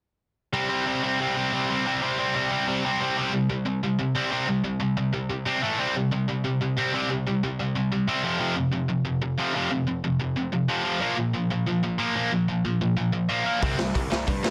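A bright, overdriven electric guitar leads this punk rock excerpt, its double-tracked, picked riff sitting up front and carrying the music alone from 0.5 seconds. The mood is rebellious and energetic, with a fast, straight 4/4 drive as the guitar moves through C5, A5, F5 and Bb5 chords before returning to C5. At 13.6 seconds a growly, fuzz-soaked picked bass and a raw garage drum kit crash in together for the final moments. The kit sounds gritty and saturated in a small, pumping room, with a boomy kick, a medium-tuned snare and hi-hat, and a rolled-off top, placed close to the listener. Light reverb and a dense, heavily limited modern master give the recording a compact punch.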